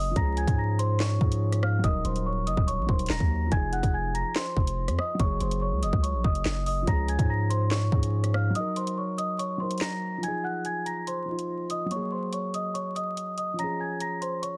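A bell-like celesta carries the melody through a low-pass filter and digital delay over a dark, intimate grand piano with audible action noise, a deep sine 808-style bass that drops out at 8.5 s, and a hard-clipped, bright-hatted drill kit with handclaps and rim clicks, giving this cold, dark half-time drill cut at 143 BPM in F phrygian a dense, heavily limited sound with vinyl crackle and a short break before its closing section at 10.2 s.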